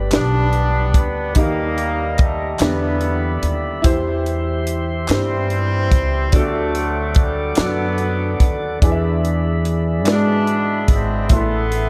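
Soulful and hopeful, this slow gospel excerpt moves in a straight 6/8, cut from a longer piece and bathed in a dreamy cathedral reverb. An upright piano with audible action noise and a short, woody sustain carries the accompaniment under a faint chorus. A tonewheel organ holds clean, sustained chords through a slowly turning rotary speaker. Up front, a pizzicato upright bass with steel strings anchors the low end beside a tight, dry funk kit of kick, high-tuned snare and hi-hat. A mellow, distant horn section carries the melody with tape echo. Very quiet, crisp group handclaps sit close in the mix until 10.4 s, as the harmony moves from G through Eb and E7 before settling on Am.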